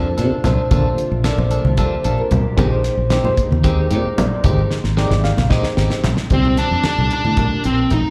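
Heard through a club PA with light reverb and small-room ambience, this driving, nocturnal electric jazz fusion excerpt runs at 225 BPM in 7/8 over C13sus4 and Bb13sus4 chords, with a round, foam-muted fingered bass and a dry, damped 70s kit with a fat snare and tight kick up front, low-tuned congas with slapback echo in the background, a reedy electric piano with fast tremolo and slapback echo, bright compressed clean guitar stabs with lush chorus, and a very quiet glassy FM pad; a drum fill from 4.7 seconds then gives way at 6.3 seconds to a dark, smooth overdriven lead guitar melody over C9sus4.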